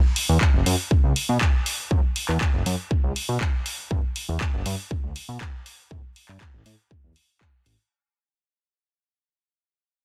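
A fat, nasal analog bass anchors this groovy, nostalgic slice of filtered disco house, its detuned sawtooth and square-wave tones shaped by tube saturation, sidechain pumping and a low-pass filter that sweeps through the whole clip. The bass enters at 0.3 seconds, ranging from F#1 to B2 with a fast attack, plucky filter edge and sustained notes, sitting up front in the mix. A punchy electronic kick drum, layered and tape-warm with a small-room character, arrives at 0.4 seconds and carries the most weight. An overdriven analog drum machine supplies handclaps and hi-hat from 0.2 seconds, with its percussion, hats and cymbals pumping against the sidechain. Little reverb keeps the sound close and dry under a dense, heavily limited modern master, and a fade-out runs across this short cut from a longer piece in a straight 4/4 feel.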